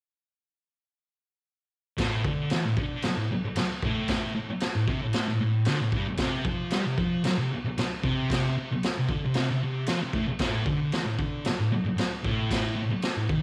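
Menacing and raw, this short cut from a longer garage rock piece moves at 114 BPM in a straight 4/4. A thick fuzz guitar carries the riff, picked and double-tracked, its dark, distorted tone sitting up front in a low register between G2 and G3. Beside it, an acoustic drum kit recorded in a small room gives a boomy kick, a medium-tuned snare and crash cymbal, its sound saturated and gritty with a rolled-off top. Both parts come in together at 2.0 seconds and play through to 13.4 seconds, forming a single section. A light studio reverb frames the pair, keeping the whole thing close and rough-edged.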